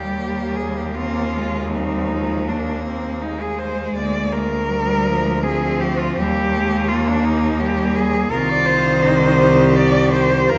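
A moderate scoring-stage reverb surrounds this recording, its top end gently capped, of a tender, serene classical piece for four solo bowed cellos in three, cut from a longer work and shaped with flexible rubato. The leading cello sings the melody up front with vibrato, a focused tone and a smooth top, while a second cello sits in the background with a soft attack and expressive portamento, and a close third cello holds the accompaniment. The fourth cello carries a rich, distant-sounding bass line, and all four parts play together throughout the 10.6 seconds.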